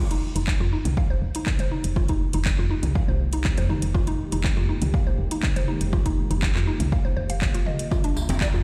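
A dark, detuned sawtooth pad and a round, mallet-like FM pluck open this short afro house excerpt at 0.0 seconds. The pad holds soft-edged Fm11 chords in the background while the pluck runs arpeggios through chorus and digital delay, both breathing with sidechain pumping. Moments later an overdriven house kit of handclaps, toms and metallic hats enters, followed by a woody, decaying FM bass pumping underneath and then a punchy, overdriven electronic kick landing up front at 121 BPM in straight 4/4. The mood is earthy and driving, set in a stone room that sounds like a big sound system in a bare space. Near the end, as the harmony shifts to Bb6, a tight, cracking djembe with metal rattles and a jingly tambourine enter at 7.9 seconds, and a breathy, close-miked cane pan pipe sounds a brief D5 at 8.4 seconds in the background.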